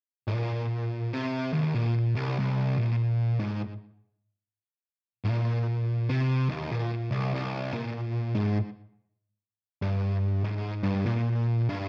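Sludgy and ominous, this short metal passage is cut from a longer piece and unfolds in 4/4 with a lazy swing on the eighth notes. A single electric fuzz guitar carries it as a solo, entering at 0.3 seconds and playing through to 11.9 seconds. Its picked lines stay low, between C2 and C3, and the tone is dark and distorted, thickened by double-tracking and a slapback echo. The guitar sits up front in a dark, warm production with a light touch of reverb, tuned slightly below standard pitch to A4 = 438 Hz.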